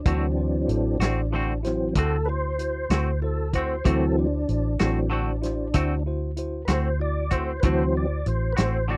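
A lightly overdriven tonewheel organ leads this laid-back, gritty slow blues in 12/8. It solos from the opening moment to 9.0 seconds over a D7 chord, its clear tone shaped by chorus vibrato, audible key click and a slow rotary speaker, sitting up front in the mix. Beneath it, a compressed semi-hollow guitar picks clean accompaniment with harmonic tremolo, while a worn, slightly out-of-tune tine electric piano adds its own overdriven comping through built-in speakers. A dark, foam-muted fingered bass gives a round, punchy low end, and a soul drum kit, recorded in a tight booth with a medium-tuned snare, punchy kick and rolled-off top, keeps time on hi-hat, kick and snare until 8.7 seconds. The dry, close, 1970s-style studio sound, with little reverb, keeps every part intimate in this excerpt of a longer piece.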